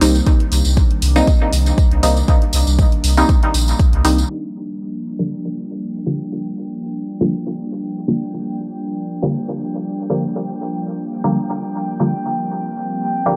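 A deep, meditative dub techno excerpt in G minor at 119 BPM opens on Cm7, with muted, detuned dub chord stabs carrying chorus, phaser and dub echo over a soft, breathy pad. A round sine sub bass with tube saturation, a jingly, close tambourine and an overdriven hi-hat set back in the mix sound alongside them from the start, and an up-front, tape-toned kick enters at 0.3 s; the stabs, pad and bass all pulse with sidechain pumping. By 4.3 s the kick, bass, hi-hat and tambourine have fallen away, and the harmony moves to Gm7 while a filter sweep runs over the stabs and a resonant, bubbling texture of random filter steps enters on a high G, all captured in a dry, gritty, low-pass-filtered hardware recording with digital ambience.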